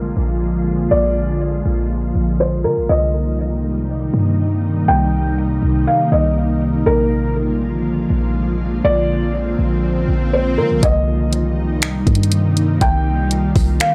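A dry, gritty recording with transformer saturation and a light reverb gives this hazy, melancholic slice of atmospheric cloud-rap a worn, hardware-bound character. An ethereal, airy pad of detuned sawtooth and triangle voices holds sustained chords with a slow attack and long release, its ensemble chorus, built-in reverb, low-pass filter and sidechain pumping keeping it soft-edged as it moves between Bb7 and Cm7. Beneath it, a clean 808-style bass sits up front, deep and boomy with a sine-like tone, fast attack and natural decay. From 0.9 seconds a felt-muted upright piano carries the melody in a high register, intimate and dark, with audible action noise and a low-pass filter and analog delay softening it further. A filter sweep runs through the opening, an electronic swell rises from 9.2 seconds, and at 10.8 seconds a smooth R&B drum kit enters up front in a half-time feel, with a soft kick, finger snaps and warm hi-hats.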